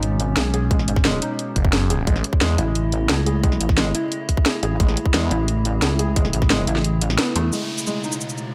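Lightly reverberant and tightly produced, this short cut of dark technical drum and bass feels futuristic and mechanical. An eerie, metallic FM drone holds sustained chords through chorus and phaser, pumping against the beat, while a heavy, pulsing pluck wobble bass anchors the low end, and a soft, felt-muted upright piano with audible action noise plays filtered, delayed arpeggios. An up-front electronic kit with a cracking snare, hi-hat and cabasa drives beside a tight, layered kick that drops out at 6.8 seconds; brief bursts of swirling, saturated detuned saw bass cut in, and after a band accent at 7.2 seconds the piano is swept by a filter as an electronic downlifter closes the passage.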